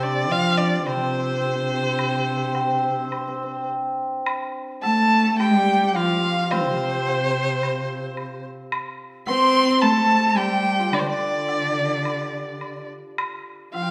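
Chinese traditional chamber music in C zhi mode, this festive and graceful passage from a longer piece moves at 107 BPM in 4/4 with a rubato feel. A rich, up-front erhu carries the melody with vibrato and portamento, while a bowed cello, also up front and expressive, and a shimmering hammered dulcimer shape the second lines beneath it. A woodblock joins at 0.9 seconds, and a bamboo dizi with a buzzing membrane enters in the background at 4.8 seconds, all set in the reverberant sound of a recital hall.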